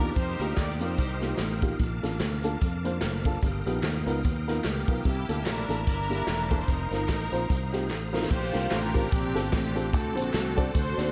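A big arena sound fills this short, jubilant stretch of uptempo gospel, set in a lush hall reverb with a touch of small-room ambience, swinging at 147 BPM in Bb major. A dark, woody upright piano with audible action noise and a slapback echo carries the accompaniment throughout, while a round, up-front fingered electric bass anchors the low end. A clear, bowed string section with vibrato states the melody briefly at the start, drops out, and returns at 4.6 seconds to carry it through to the end. In the background, a reedy tonewheel organ holds sustained chords through a fast rotary speaker with chorus vibrato and key click, and a vintage, band-limited blend of egg shaker and group handclaps joins at 0.2 seconds alongside the swinging big-band drum kit with its punchy kick. Rich extended harmonies such as F9sus4, G7alt and C13 give the progression a soulful color, and a drum fill at 7.9 seconds ushers in a new section that lands on Bb69 before moving to D7.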